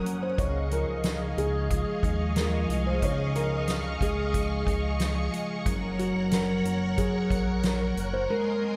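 This floating, ethereal dream pop opens at once with a felt-muted upright piano carrying the melody, its mellow, intimate tone softened by tape echo and audible action noise, over shimmering vintage string-machine violins holding sustained chords through ensemble chorus and a clean electric guitar playing fingered arpeggios bathed in lush chorus and tape echo. A soft-mallet drum kit enters at 0.1 s with a distant, roomy sound, a fat snare and punchy kick, and a glossy, dark chorused synth bass joins at 0.4 s as the harmony moves from Dbadd9 to Gb at 5.7 s. The whole passage sits in a wet concert hall reverb, and it is cut from a longer piece.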